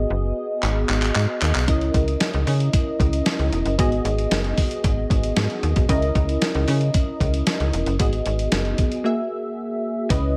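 A digital ambience surrounds this slick, funky excerpt of early-eighties boogie funk at 114 BPM in C# dorian, where a snappy, metallic slap-like FM bass and a punchy, detuned sawtooth polysynth comp with a filter pluck, moving notch and chorus sit up front over chords cycling between G#m7 and C#m69. A gritty, compressed sampler-style drum kit with a thumpy kick, fat snare, hi-hat and handclaps, re-recorded in a large room and bathed in gated reverb, enters with a fill at 0.6 seconds. The groove reaches a break on F#9 at 9.1 seconds.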